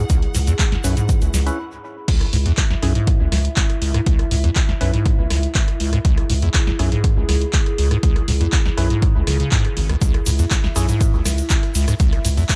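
A straight 4/4 acid house groove at 121 BPM in C# minor pentatonic, this trippy, gritty passage is cut from a longer piece and sits on a punchy, up-front electronic kick and an analog drum machine of crash, ride, hi-hat, rim click, handclaps and a punchy snare, with a short room sound on the snare, claps and hats. A squelchy, resonant square-wave acid bass drives the riff with a filter sweep through the opening, thickened by tube saturation, subtle chorus and dub echo, while a deep, saturated sine sub bass holds down the low end, both pumping against the kick. Above them, a warbling, nostalgic lo-fi pad of detuned square and triangle tones sustains dark chords with chorus and built-in reverb. A lush bowed string section with vibrato lingers in the background only at the start, and a grainy tube shaker appears early and returns from 10.0 s. From 0.8 s, a mellow, wave-folded organ stab flickers through phaser and dub echo in the background, and after a brief stop at 1.6 s, the drop lands at 2.1 s, all within an echo-heavy digital ambience.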